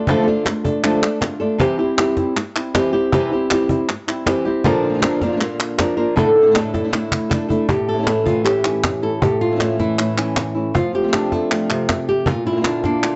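The recording sounds dry and gritty, with a dull top end and only a touch of studio reverb. This is a passionate, dramatic flamenco passage at 158 BPM in a straight 4/4, cut from a longer piece. An up-front, boxy fingerpicked flamenco guitar carries the melody, while a second, quieter fingerpicked guitar adds warm stabs beneath it. A snappy cajon with snares, heard in a small room, and crisp, close palmas hand claps drive the rhythm throughout. The harmony moves from D minor through C and Bb to a suspended A, and a drum fill from 6.9 to 7.7 seconds leads into a second section built on A, F and Bb.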